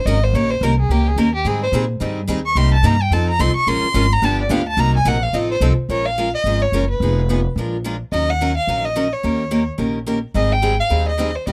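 A bowed violin with smooth vibrato carries the melody and takes a solo through the first 5.9 seconds of this bittersweet, virtuosic excerpt of jazz manouche string swing in Bb minor, moving briskly at 216 BPM with a swung feel. Up front beside it, a woody, thumpy pizzicato upright bass on gut strings anchors the low end while a bright, boxy picked parlour guitar supplies accompaniment. A second picked guitar with fresh strings sits in the background, entering at 1.5 seconds and returning near the end, all captured closely and in fine detail in a dry room.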